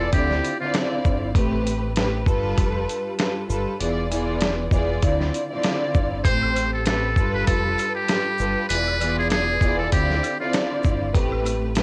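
Cassette-grained and set in a small room, this dark, reflective boom-bap hip-hop passage in A minor moves at 98 BPM with a swung sixteenth feel, as lush, woody bowed strings move through Dm9, Am9, G9 and E7b9 over a round, punchy dub bass and a gritty, compressed sampler-style kit with a thumpy kick, medium-tuned snare, hi-hat and shaker, while a buzzy, breathy muted trumpet with tape echo plays a brief phrase at the start and returns at 6.2 seconds alongside very quiet maracas and woodblock.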